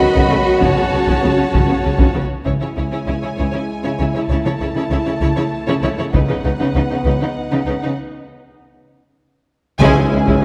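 A lush, dramatic stretch of epic orchestral film score in 6/8, where vibrato-rich violins carry a focused melody over a second violin line, intense violas, smooth cellos and distant double basses while soft-attack French horns and vintage-toned trombones hold sustained chords in the background, heavy-sticked taiko drums pound relentlessly from a large room, and after a break from 8.0 s the full ensemble lands a final accent at 9.8 s with hard-malleted timpani and a bright tam-tam.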